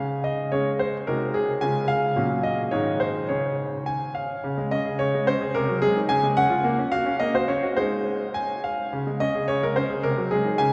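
A clear concert grand piano opens alone on a Db5 chord, playing a graceful, playful classical-period sonatina in Db major at 108 BPM in 2/4, with a rubato feel and a range from Ab2 to Ab5. Its smooth, vintage tone sits up front with a deep bass, and the phrase moves through Ab7/C, Db, Gb/Bb and Ab before beginning again at 4.4 seconds. A cathedral reverb with a 4.5-second tail surrounds the dark production of this short cut from a longer piece.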